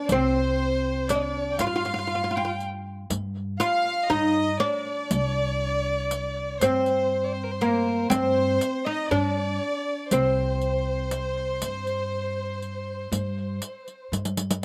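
Up front and woody, a plectrum-plucked fretless oud carries a longing, soulful melody in C makam ussak over a 10/8 pulse at 120 BPM, joined by a clear chamber violin section and a single expressive violin with vibrato and portamento, both touched by slapback echo, while a pizzicato upright bass and a close, dry riq with dark jingles play on through a drum fill at 14.1 seconds that closes this dry, outdoor excerpt from a longer Turkish makam ensemble piece.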